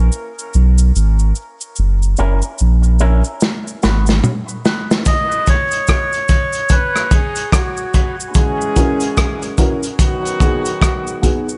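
A deep, round dub sub bass and a close, dry cabasa open this laid-back, spacious dub reggae excerpt at 73 BPM, joined by a twangy, envelope-filtered electric guitar with spring reverb and dub echo at 2.2 s and then a gritty, saturated breakbeat kit whose fill arrives at 3.4 s; a reedy, breathy melodica and a punchy horn section with octave doubling enter at 5.1 s, followed shortly by woody, slightly detuned upright piano stabs, over chords moving from G#m through F#7 to E6 and B6 in a small-room ambience.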